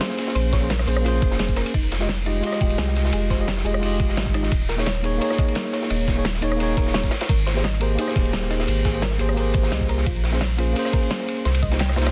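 A straight 4/4 liquid drum and bass groove at 173 BPM in F minor, cut from a longer piece, pairs a crunchy, gritty breakbeat kit with a rolled-off top against a layered pop kit of fat snare, crisp hats, ride and rim click, joined at 0.5 seconds by an overdriven, knocking electronic kick. A round sine sub bass sits up front from 0.4 seconds beneath a mellow, clean tine electric piano with delay, whose chords move from Bbm9 through Fm9, Eb7sus4 and Abmaj9, while a quiet, warbling FM thumb-piano-like pluck spins arpeggios through chorus and tape echo in the background. The mood is melancholic and lush, set in a dry, dense, heavily limited modern master.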